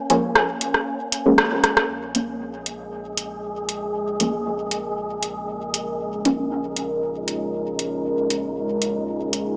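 Dub techno with a meditative, cavernous mood, this excerpt opens on a brief break, where a breathy, wind-like tuned noise texture hangs behind an up-front deep house drum kit of hi-hat and rim click, and a soft, detuned chord stab carries chorus, phaser and dub echo over a Bbm7 harmony. After a band accent and a drum fill, a clean, smooth sine sub bass with tube saturation enters at 1.9 seconds, and a moody, detuned ambient pad with chorus and a slow attack rises at 4.7 seconds while the stabs continue until 6.3 seconds. The mix sits in a lush hall reverb yet has a gritty hardware character, with cassette tape, transformer saturation and a small-speaker sound.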